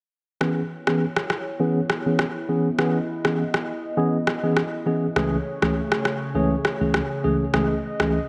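A tine electric piano with medium tremolo, clean and through a combo amp, opens at 0.4 seconds alongside a hollow, flute-like pad with chorus and an up-front, tape-warm electronic rim click, setting a mellow, sultry afrobeats groove at 101 BPM in C# minor with a lightly swung 16th feel, as chords move from C#m7 to Amaj7/C# at 5.2 seconds under a filter sweep and light digital reverb in this short excerpt.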